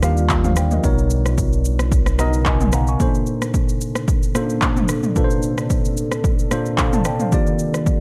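Soulful and warm, this short amapiano excerpt moves at 111 BPM in 4/4 with a lightly swung sixteenth-note feel, set in Bb major against a dark production and digital ambience. A deep house drum kit sits up front with handclaps, rim click, shaker, toms and a punchy, overdriven kick, its layered electronic sound giving the groove weight. A worn, slightly out-of-tune tine electric piano carries the accompaniment through warm, clean chords moving from Ebmaj9 to Bmaj9, Bbmaj9 and back to Ebmaj9, and it breaks into a short fill between 1.9 and 3.0 seconds. Underneath, a full sine-and-triangle sub bass with an octave layer holds a sustained low line only until 3.0 seconds. In the background, a moody, detuned sawtooth pad with a sub octave, chorus and built-in reverb breathes in slowly and lingers, adding a shadowy depth to the whole piece.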